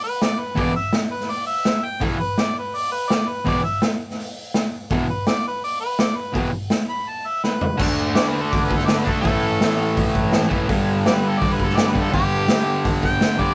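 Gritty and swaggering, this garage rock clip for a small band drives along at 166 BPM in a straight 4/4, centred on E minor. An overdriven harmonica opens at 0.0 seconds with a clear, punchy solo melody marked by light vibrato and scooped notes, joined almost at once by a raw acoustic drum kit of crash, hi-hat, kick, snare and toms. The drums sound saturated and dark-cymbaled, with a punchy kick and a pumping small-room feel, while a bright, double-tracked fuzz guitar enters at 0.6 seconds with a picked, compressed riff. A drum fill from 7.4 to 7.8 seconds leads into a second section, where the harmony moves from E through D, A and G power chords. The whole thing has the rough, up-front character of a rehearsal-room take, with a moderate booth ambience, and it is cut from a longer piece.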